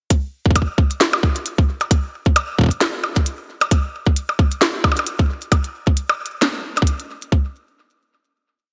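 IDM with a playful, glitchy mood, this short, complete piece rides a lightly swung 16th-note feel in 4/4. An overdriven electronic kick drum sits up front from 0.1 seconds, its tight thump tracing a broken, unpredictable pattern. Alongside it, a glitchy drum kit supplies clicky closed hats, a tiny snare and high, bongo-like percussion blips, also overdriven and treated with delay, forming an ever-changing beat. Both parts sound as though they were re-recorded in a small room, giving the bright, 1980s-style digital production a close, gritty edge under a light reverb. The groove runs to about 7.3 seconds before a final hit rings out until 8.7 seconds.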